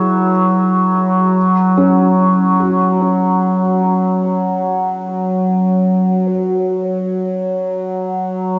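A nasal, resonant drone on F#3 sits up front with moving overtones, a slow attack and long release, and chorus and its own reverb, holding alone once the piano stops at 6.3 seconds and carrying on until 8.6 seconds. Alongside it, a felt-muted upright piano plays dark, intimate arpeggios between C#4 and F#4, with subtle chorus, tape echo and shimmer reverb, fading out across its span over an F#9sus4 chord that settles to F#5. This melancholic, serene ambient fragment, in free time and tuned to A4 = 441 Hz, is cut from a longer piece and has a dreamy, cassette-softened mix soaked in plate reverb.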